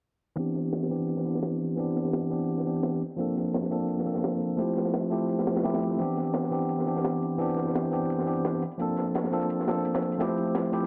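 Liquid drum and bass at 171 BPM in C major, this dreamy, uplifting passage, cut from a longer piece, runs with a light 16th-note swing. A clean tine electric piano sits up front as the accompaniment, its tone colored by a built-in speaker character, a low-pass filter and tape echo, with a filter sweep running across its whole span from 0.4 to 10.9 seconds. Beneath it, a crunchy breakbeat drum kit of hi-hat and high-tuned snare sounds dark, gritty and saturated, with a rolled-off top and high-pass filtering on the hats, snare and room. A very quiet electronic hi-hat adds a bright, overdriven, layered shimmer in the background. The harmony moves through Cmaj9, Bbmaj9 and Fmaj9 and then repeats, all within light reverb and a studio ambience.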